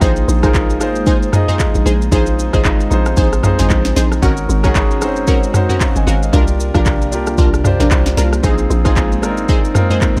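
Amapiano at 114 BPM in 4/4, this short cut from a longer piece has a late-night, deep mood, with a swung sixteenth-note feel and a dark production under light reverb. An up-front electronic drum kit with a deep kick and sharp snare drives the groove, adding handclaps, rim clicks, shaker and toms. Beneath it, a hollow, bouncy log drum bass with a fast attack and mellow decay carries the low end throughout. A clear, intimate grand piano plays accompaniment with long sustain and audible action noise, while punchy, bright chord stabs with a sub octave, filter sweep, chorus and tape echo punctuate the harmony until about 10.0 seconds. In the background, a soft, airy, flute-like pad with a slow attack and chorus holds sustained chords over a progression of suspended ninth chords moving from Bb9sus4 to Ab9sus4, C9sus4 and back to Bb9sus4.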